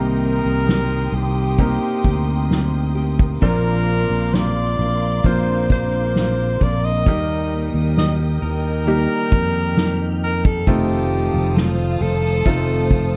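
A tender, emotional pop ballad excerpt in Bb major at a slow 66 BPM, led by a breathy, vintage-toned alto saxophone with scooped notes and a slapback echo, over a clear, polished grand piano with audible action noise, intimate sul tasto strings holding chords with a smooth top, a woody, full-bodied picked acoustic guitar playing very quiet arpeggios, a growly, up-front fretless bass, and a distant, roomy soft-mallet drum kit with dark cymbals, a fat snare and a punchy kick, in a fairly dry mix moving through Cm7, Bbadd9, Eb and F7.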